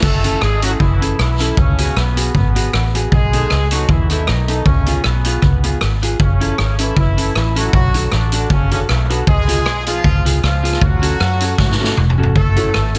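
A punchy horn section, distant and roomy with vibrato and tight octave doubling, carries the melody through this energetic, driving ska passage, its lines trailing a dub echo. Underneath, a street-band drum kit sits up front with a boomy kick, medium-tuned snare, dark cymbals, rim clicks and toms, and it plays a fill from 11.6 to 12.4 seconds. A fingered electric bass, round and foam-muted, anchors the low end. From 0.2 seconds, an electric guitar through a small old amp adds bright, twangy, slightly broken-up accompaniment, also carrying a dub echo. A mellow, woody upright piano slips in with boxy stabs in the background at 12.6 seconds. The tune moves at 156 BPM in F# minor with a light swing, cycling through chords like F#m7, C#7sus4, B7 and Dmaj7 in a dry mix cut from a longer piece.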